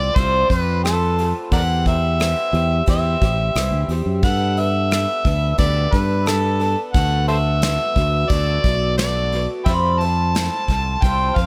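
A dry, echo-heavy mix frames this nostalgic, hopeful folk rock and heartland rock excerpt, cut from a longer piece. An up-front overdriven harmonica carries the gritty melody with scooped notes, tongue slaps and light vibrato, trailed by dub echo. Beneath it sit a bright, shimmering octave-doubled twelve-string acoustic guitar, a fingered electric bass, and an airy brushed drum kit with a tight kick and rim clicks that joins at 0.2 seconds, all moving through F, C/E, Gadd9 and D6.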